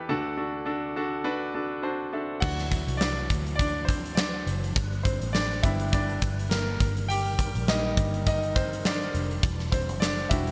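Uplifting, piano-driven pop at 103 BPM with a light sixteenth-note swing, where a bright, brilliant concert grand opens alone with a fill at 1.5 seconds before taking a solo from 2.4 seconds as a punchy arena drum kit with gated reverb and bright cymbals, a dark, round foam-muted electric bass, and a fat, lightly overdriven tonewheel organ with key click and slow rotary speaker in the background join over chords moving from D through Dadd9, G and Eb/G to Em7, all in a bright 1980s-style digital production cut from a longer piece.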